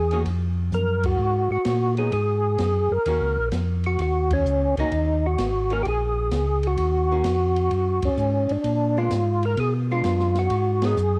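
Captured as a home recording on cassette, with light reverb and a small room ambience, this is a bluesy, late-night soul jazz organ trio swinging in 4/4. Up front, a percussive tonewheel organ carries the melody with a fat, lightly overdriven tone, its third harmonic percussion colored by chorus vibrato, a slow rotary speaker and cassette tape. A second, mellow tonewheel organ handles the bass line, round and clean through chorus vibrato and a slow rotary speaker, with a touch of tube saturation. In the background, a miked archtop guitar adds picked, hollow-body accompaniment, while an acoustic jazz kit with dark cymbals, a punchy kick and a medium-tuned snare plays across hi-hat, ride and toms. A drum fill arrives at 0.7 seconds, and band accents punctuate the passage as the chords move from a rootless Eb minor through Ab7 and Ebm7 to Bb7b9, reaching Abm7 just before this excerpt breaks off.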